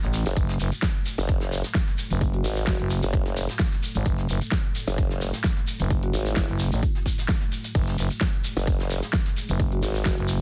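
A driving 130 BPM groove in 4/4 with a 54% swing on the sixteenths gives this aggressive, bouncy bass house cut its loping push, sitting in F# minor over a single F#madd9 chord. The punchy, overdriven electronic kick sits up front from 0.4 seconds, layered with a big-room dance kit of huge snare, metallic hats and crash cymbal, while a brushed acoustic kit with an airy, polished small-room sound adds hi-hat and snare in the background, alongside a grainy shekere. Two basses dominate the low end, both up front and pumping against the sidechain: a thick, growling FM bass with overdrive, and a formant-sweep wobble bass built from sawtooth and sine, coloured by chorus and tube saturation. Above them a very quiet, moody analog pad of detuned sawtooth and triangle waves with a sub octave holds sustained chords from 0.8 seconds, its slow attack and long release adding depth. Short phrases from a woody, round marimba with soft mallets surface in the background around 2.3, 6.0 and 9.7 seconds, trailed by tape echo. 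The whole excerpt, cut from a longer piece, carries a small-room ambience and a dense, heavily limited modern master.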